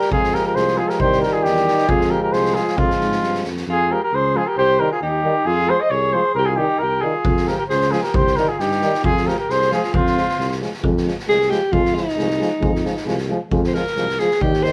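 A lightly reverberant, live-in-one-room recording of a bittersweet, restless Balkan brass band in F minor at 134 BPM in 2/4, cut from a longer piece, where a soft-edged, distant flugelhorn with vibrato carries the melody up front with a slapback echo until 10.6 s, a clear, smooth-topped alto saxophone plays a second line and takes a solo from 10.8 s, two euphoniums (one roomy, one punchy) accompany in the background, a mellow tuba anchors the bass, and a street-band drum kit with a boomy kick and rolled-off top drops out between 3.6 and 7.2 s over chords moving between Fm and Cm.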